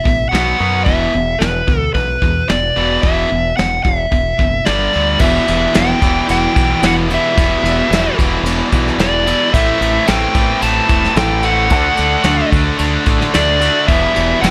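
Aggressive and heavy, this hard rock excerpt in E minor drives along at 111 BPM in a straight 4/4, with a dark, smooth lead guitar up front carrying the overdriven melody through plate reverb over a bed of background riffs from a tight distorted guitar and a hollow-toned overdriven semi-hollow guitar. A round, growling fingered bass with overdrive and a brushed acoustic kit with a punchy kick and rolled-off top hold down the low end. At 5.2 seconds a bright, double-tracked overdriven electric guitar joins the riffing as the harmony moves through Em, Am and D, all set in a light reverb.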